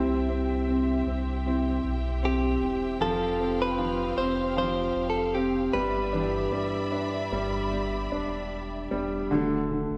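Pop ballad at 77 BPM in an emotional, hopeful mood, where a clean, compressed electric guitar recorded direct carries the melody until 8.5 seconds over clear, polished baby grand piano, fingerpicked arpeggios from a full-bodied jumbo steel-string acoustic guitar in the background, a round, deep sine sub bass and a lush bowed string ensemble with vibrato that holds sustained chords until 9.3 seconds, moving from C through Fsus2 and G6 to D inside a reverberant recital-hall space in this excerpt of a longer piece.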